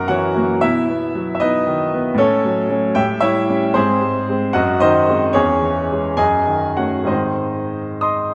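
This is a romantic classical character piece for solo piano, an excerpt cut from a longer work, passionate and stormy in mood. It moves in 6/8 with free rubato, the pulse pulling and pushing through its 8.3 seconds. The grand piano is bright, brilliant and open, placed up front with long sustain, and its playing spans from E2 up to D#6. A restless harmonic path drives the turbulence, passing from F#7 to B, then through F#m/A and A7 to G#, before darkening through G#7/F#, C#m/E and D#m7b5/F# and landing back on G#. The sound sits in a wet scoring-stage reverb with a decay of 1.9 seconds, giving the instrument a spacious, resonant halo.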